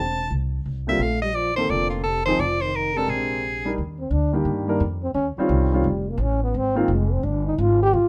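An edgy, punchy soprano saxophone leads this swinging, playful jazz excerpt at 173 BPM, its forceful vibrato melody giving way at 3.8 seconds to a mellow trombone solo with scooped notes, over a woody pizzicato upright bass and a grand piano with short sustain that comps from 0.9 to 6.9 seconds, all in light reverb as chords move from Bbmaj9 through Fm and Bb9 to Ebmaj7 and Ab6.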